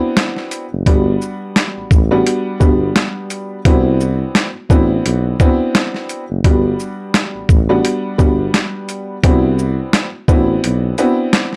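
A dark, woody upright piano opens at 0.0 seconds, its worn, slightly detuned tone and audible action noise giving this nostalgic boom-bap hip-hop excerpt an intimate, boxy feel as it moves between Cmaj9#11 and Gmaj7 in G major. A gritty, pitched-down sampler-style drum kit follows almost at once, its compressed hi-hat, shaker, medium-tuned snare and thumpy kick sitting up front in a swung 4/4 at 86 BPM. From 0.7 seconds a mellow tuba carries the bass in a jazz-style solo role, colouring its low notes with vibrato and scooped attacks. The production is dark and warm with a light reverb, keeping all three parts close. The kick drops out at 10.6 seconds, and the tuba finishes at 10.9 seconds, leaving the other drums and piano to round out this short cut from a longer piece.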